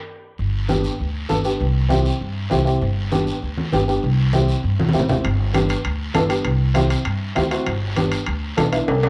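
Sunny and joyful, this cumbia snippet moves at a brisk 198 BPM in G major, with a dark, pizzicato upright bass and a worn, slightly detuned upright piano up front, low-tuned vintage congas and a distant, raspy guiro on percussion, ringing metal-shell timbales joining at 5.2 s after a drum fill, and a cassette-tinged home-recording sound with light studio reverb.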